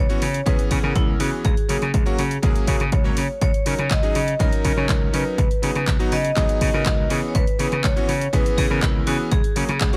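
A steady, straight 4/4 pulse at 122 BPM drives this sensual, cosmic nu-disco cut, taken from a longer piece in C# dorian, with a punchy, tape-warm electronic kick sitting up front from 0.5 seconds and a layered house kit adding handclaps and warm hi-hats. Underneath, a gritty, overdriven slap bass, direct and amped, moves between C#2 and C#3 and breathes with sidechain pumping. A bright electric grand piano fills out the accompaniment with a cutting, clangy tone and long sustain, also pumping against the kick. Over the top, a vibraphone struck with hard mallets carries the melody, its metallic, ringing, band-limited voice trailed by tape echo and played with the motor off for a vintage feel. The harmony circles from C#m7 through F#add9, D#m7 and G#m7 over C# in the bass, and the dry, close sound keeps every part present and immediate.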